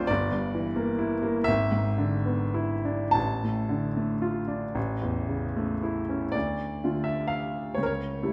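A clear, intimate grand piano sits up front in a recital hall with moderate reverb, its action noise audible and its tone natural. This wistful, mournful romantic nocturne for solo piano moves in a slow, rubato 12/8, ranging from G1 to A5 over harmonies that pass from a diminished chord through dominant colors to settle on D minor at 6.3 seconds. The brief 8.3-second passage is cut from a longer piece, ending on an A7 chord over C#.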